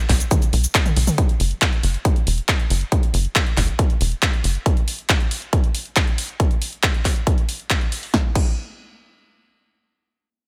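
A straight 4/4 pulse at 138 BPM drives this bittersweet, soaring uplifting trance excerpt, tuned to A4 = 439 Hz, opening on a drop over the first 1.2 seconds. An up-front electronic kick, layered and tape-warm with a large-room character, runs from 0.1 to 8.5 seconds alongside a punchy analog drum machine of crash, handclaps, hi-hat, shaker, snare and toms, its snare, clap and hats set in a short room. A tight, nasal sequencer bass of sawtooth and square waves with a plucked filter pumps with sidechain from E1 to B1 until 4.6 seconds, all in a dry mix.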